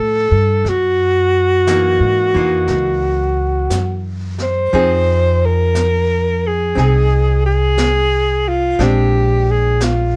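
A slow swing pulse at 59 BPM in 4/4 sets the tempo for this intimate, tender jazz ballad, cut from a longer piece. Up front, a breathy alto saxophone carries the melody with a whispered, close-miked tone, soft attacks, scooped notes and vibrato. The pizzicato upright bass sits close as well, woody and growly with steel strings, while a clean, dark hollow-body archtop guitar, miked and amplified, picks out the accompaniment beneath. The brush kit joins at 0.7 seconds, distant and roomy with a rolled-off top on brushed snare and hi-hat. Light reverb and a dark, warm production frame the harmony as it moves from Dm9 through F#13 and Fm7 to Bb9.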